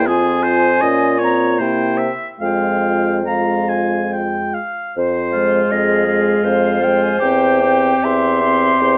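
In a rubato triple metre, this slow, elegiac and solemn classical movement for wind quintet unfolds as a short excerpt from a longer piece, with the new section arriving at 5.0 seconds. The silver concert flute carries the melody with a pure, crisp-edged tone and expressive vibrato, while the warm oboe shapes a distant second line. The clarinet's soft attack and the clear, smooth-topped French horn fill the accompaniment over a mellow, lightly vibrating bassoon bass, all heard through close, detailed microphones in a moderate recital hall.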